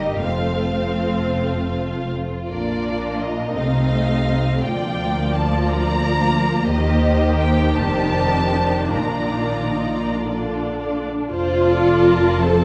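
Classical string orchestra music, this serene, slow romantic movement in Bb major moves in a rubato 6/8 at roughly 49-59 BPM and is cut from a longer piece. A violin section carries the melody with a soft attack, vibrato and a smooth, expressive top, while a second violin section sits more distant, adding an even, rich inner line beneath it. The viola section stands up front with a focused, close accompaniment, the most prominent voice in the blend. Below, a woody, dark cello section rests in the background, and a double bass section anchors the low end with a bowed, lush foundation. The harmony drifts from F through Bb, a diminished chord and a Cm7 to an F13 before settling on Bb, and at 11.3 s a new section opens on F. A recital hall reverb with a 1.7-second tail bathes the ensemble in a dark, warm sound.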